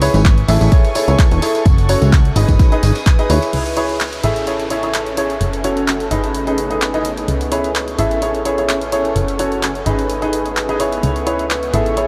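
A clear, woody upright piano riff leads this energetic, soulful piano house excerpt, carried by a plucky analog bass, an overdriven drum machine with crash, handclaps and hi-hat, and a distant, sul tasto violin section holding soft chords that take on a filter sweep from 3.5 seconds, while a punchy electronic kick drops out at 3.2 seconds, a very quiet soul drum kit and tambourine stop at 3.5 seconds as a faint downlifter sounds, and a cloudy granular pad drifts in at 4.4 seconds, all set in a dreamy, reverb-soaked mix.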